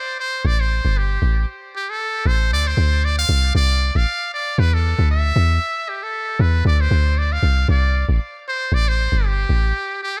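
Amapiano with a late-night, soulful mood and a gently swung groove, heard in a short fragment of a longer piece. A muted trumpet carries the solo melody in a jazz style, its buzzy, thin tone shaded with vibrato and scooped notes and trailed by a diffuse ambient delay. From 0.4 seconds a deep, round log drum bass with a fast attack and dark decay sits up front, and a light small-room reverb frames the whole track.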